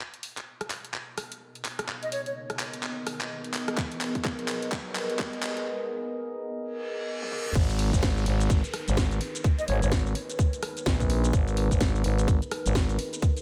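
Bass house at 127 BPM in G# minor, gritty and bouncy, with a swung sixteenth-note feel over a G#madd9 chord, cut from a longer piece. A garage drum kit runs from the start with a cracking snare, bright hats, handclaps, rim clicks, shaker, toms and crash, dressed in studio reverb, while a filter sweep and drum fills drive a build-up through the first 7.6 seconds. A moody analog pad of sawtooth and triangle tones with a sub octave fades in slowly beneath chorus, phaser and sidechain pumping, and a breathy, reedy concert flute with vibrato and delay flickers in for brief phrases. Background effects add a riser and then, after a break, a reverse cymbal leading into the drop. A tight, up-front electronic kick enters at 3.8 seconds, and at the drop a growling, thick FM bass with a fast attack, overdrive and sidechain pumping takes over the low end.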